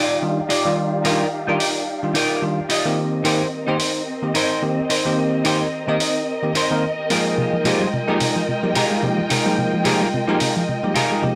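Nu-disco with a sunny, groovy swing, this brief cut from a longer piece sets a semi-hollow electric guitar riff, clean and hollow-toned with analog chorus and tape echo, over bell-like tine electric piano accompaniment and a gritty, overdriven electronic hi-hat. A dark, lush symphonic string section holds sustained chords under a filter sweep as the harmony moves from Ebmaj9 through Cm7 to Fm11. At 7.4 seconds a soft, round pluck joins with mellow arpeggios, all within a dry, gritty recording touched by light digital ambience.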